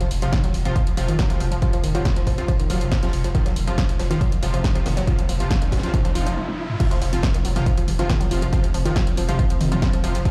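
Intense and relentless, this driving peak-time techno cut runs at 139 BPM in a straight 4/4, built on an F5 chord and taken from a longer piece. An overdriven, punchy electronic kick sits up front from 0.3 seconds, joined by a dry analog drum machine whose overdriven snare, hi-hat, crash and toms hit hard, while a very quiet acoustic brush kit adds a dark, smooth ride and a high-tuned snare underneath. A thick, saturated sub bass holds F1 with overdrive and a low-pass filter, pumping against the kick alongside a lush, warbling unison pluck riff between Eb3 and Gb3, coloured by tube saturation and dub echo. Detuned supersaw stabs spanning C3 to F4 bring a filter-swept, cassette-tinged bite with tape echo, and a background riser builds from 4.9 seconds into a drum fill and stop that ends at 6.8 seconds. The drop then lands, and a deep, moody ambient pad with chorus and its own reverb enters at 7.4 seconds, lending a dark, sub-octave weight beneath the groove, all set in a large studio reverb that suggests a big sound system in a bare room.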